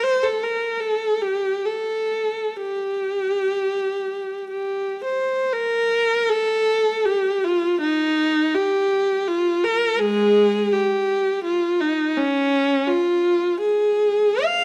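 Heard through close, detailed microphones with a faint vinyl crackle, this recording sits in the moderate reverb of a recital hall, giving the instrument a gentle halo of space. It is a fragment cut from a longer classical piece for unaccompanied viola, free and expressive in G minor, moving in 3/4 with a rubato feel that drifts between 50 and 84 BPM. One player carries the whole piece, the bowed viola sitting up front with a warm tone, vibrato and sliding portamento as it ranges from Ab3 up to F5. The mood is meditative and mournful. An opening passage gives way at 5.5 seconds to a contrasting second section that carries the line through to the cut at 14.6 seconds.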